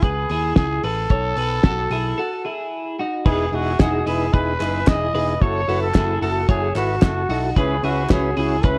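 A straight 4/4 pulse at 111 BPM drives this bittersweet, restless fragment of jangly indie pop, with a dry, cloth-damped drum kit thudding up front beneath a fat snare and dark cymbals while a punchy picked bass anchors the low end. A raspy, growling trumpet carries the melody over bright, twangy twelve-string electric guitar arpeggios with a drifting pitch, moving from C#m7 to B7 before a break at 2.2 s and then on through Emaj7 and F#m7. A reedy combo organ with heavy vibrato joins at 3.3 s, crisp group handclaps sit in the background from 3.8 s, and the recording carries light reverb and the wobble of worn old cassette tape.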